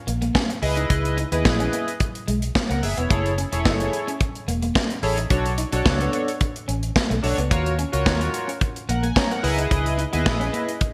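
Early-eighties boogie funk at 109 BPM in 4/4 with a straight feel, this funky, late-night excerpt is cut from a longer piece. It opens on a rootless Eb7 with the third omitted, then moves through minor-ninth chords, from Dbm9 through Gbm9, Bm9 and Ebm9 before returning to Dbm9. A modern studio drum kit of hi-hat, kick and snare sits up front with a punchy kick, a medium-tuned snare, a rolled-off top and gated reverb. Underneath, a vintage muted fingered electric bass gives a dark, round, foam-muted tone. From 0.6 seconds a glossy, retro polysynth carries the accompaniment with sustained pulse-wave and sawtooth tones, pulse-width modulation and chorus, placed up front. A clean, picked electric guitar plays a riff in the background with analog chorus. The bright digital production adds a lush hall reverb and small room ambience.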